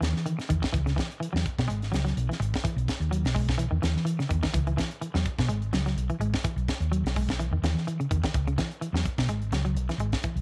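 A small room ambience surrounds this short cut from a longer afrobeat piece, with the bass and drums sitting up front in the mix. The mood is defiant and driving, carried by a lightly swung sixteenth-note feel in 4/4. A tight funk drum kit, acoustic and mid-forward, pairs a high-tuned snare and a snug kick with hi-hat. A hollow-body short-scale electric bass, fingered and amped, gives a round, punchy low end that ranges from G#1 to E3. A clean, twangy electric guitar with a dark edge plays fingered arpeggios in a narrow band between C#3 and G#3. The harmony moves between E major seventh and C-sharp minor seventh throughout the 10.4 seconds.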